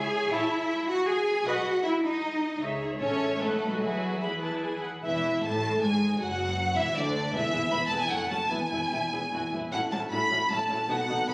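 In a rubato 3/4 at 143-160 BPM, this cheerful, lively classical-period movement for string orchestra in E major sets a lush, up-front violin melody over a dark, woody second violin line, expressive violas, a focused cello bass and a close, even double bass, every section bowed with vibrato and heard through moderate scoring-stage reverb from a phone in the room.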